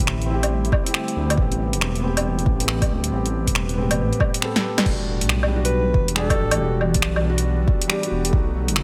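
A light reverb gives this short future garage excerpt a rainy, nocturnal haze, with the pad, bass and piano all breathing under sidechain pumping. At 138 BPM in E minor with a swung 4/4 feel, a dark detuned saw bass rumbles up front, deep and beating, while an ethereal, airy pad sits in the background with ensemble chorus, its own reverb and a layer of vintage 12-bit sampler grit, holding sustained chords that move from D7sus4 to Am7 and then Em7. A felt-muted upright piano adds soft, intimate accompaniment through a delay, its vintage, thin-felt tone sitting gently in the mix. The overdriven deep house drum kit comes forward with a punchy snare, hi-hat, finger snaps, woodblock and crash cymbal, joined by an electronic kick that enters at 0.7 seconds, drops out briefly around a drum fill, and returns for the second section at 4.9 seconds. Near the end, a breathy alto saxophone with light vibrato and a smooth top slips in at 5.7 seconds for a short solo phrase through digital delay.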